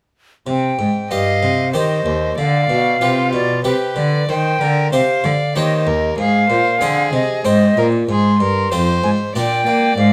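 At 0.5 seconds a flute, harpsichord and cello begin together in a grave, flowing baroque-style sonata movement in triple time, cut from a longer piece. The airy concert flute carries the melody with a soft attack and expressive vibrato, its bright tone caught close to the microphone. Beneath it, a single bowed cello gives a rich, up-front bass line, while a dry, round harpsichord with one set of strings fills in the continuo harmony in a full Italian manner. From 1.1 seconds a solo violin adds a quieter, focused second line with vibrato. The harmony moves from its opening minor chord through a dominant seventh and on to brighter major turns before the excerpt ends at 10.1 seconds. Light reverb and detailed close miking keep the ensemble intimate and clear.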